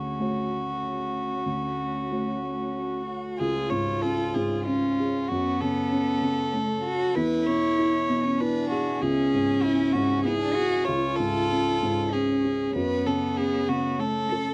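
A pure, floating solo violin bowed sul tasto carries the melody up front in this melancholic, reflective neoclassical piece for piano and strings, moving at a rubato 96 BPM in 3/4 and tuned to A4 = 435 Hz, while a single cello with vibrato and an airy bow sings a close second line, a mellow, boxy felt-muted upright piano gives intimate accompaniment, and a glassy, ethereal FM pad with ensemble chorus and built-in reverb holds slow-blooming chords in the background, as the harmony opens on Dmaj7 before turning to C# at 3.4 s and wandering through F#m, E and C#m in a dry, close 1970s-style studio sound with light reverb.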